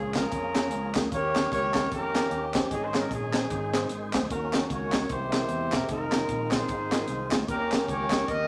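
A tight, mellow horn section carries the melody up front, its pop-style phrasing set in a distant, roomy space that gives this brief uptempo gospel cut a hopeful, jubilant lift. Behind it, a polished fusion drum kit enters at 0.2 seconds with a high-tuned snare, punchy kick and hi-hat, sounding airy and crisp in a studio room, while very quiet, close and dry group handclaps start just ahead of it at 0.1 seconds. A fingered electric bass, direct and amped with a punchy edge, anchors the low end under the swung 4/4 groove. A full, clean tonewheel organ holds sustained chords in the background through a slow rotary speaker with chorus vibrato, and a very quiet tine electric piano adds soft accompaniment through its built-in speakers until 8.2 seconds. The harmony moves from Bbm7 and Eb7 through an Absus4 resolving to Ab, then Ebm7, C7b13 and Fm7 before landing back on Eb7, all bathed in a wet studio reverb.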